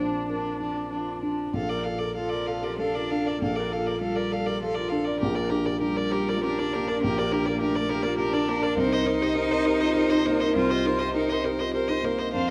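Tender and intimate, this short neoclassical passage for piano and strings is taken from a longer piece. It moves in a rubato 3/4 at around 101 BPM in Bb major, drifting from Bb to Bbmaj7 at 1.5 seconds, then through Gm/Bb to Cm7. A felt-muted upright piano sits up front, its tone dark and mellow with audible action noise and a vintage, thick-felt softness as it accompanies across a broad range. A single violin carries the melody with a rich, smooth, even sound and vibrato. A focused solo viola adds bowed accompaniment, and a distant, clear cello traces a second line beneath. All four play throughout the full 12.5 seconds, set in a wet recital hall with a 1.4-second reverb tail.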